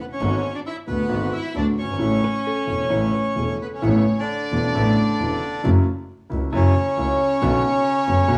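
Vinyl crackle and a moderate large-studio reverb surround this nostalgic, passionate tango excerpt in A major at 134 BPM with a rubato feel, where a reedy, bright bandoneon carries the melody up front over a sul tasto violin section with a soft, floating second line, an intimate concert grand with audible action noise and deep bass, and a close, bowed double bass with a biting, nasal tone and light vibrato, while a dark, clean hollow-body jazz guitar adds a brief second line in the background from 2.2 to 3.8 seconds as the harmony moves from G#m7b5 through A and F#7 to Bm.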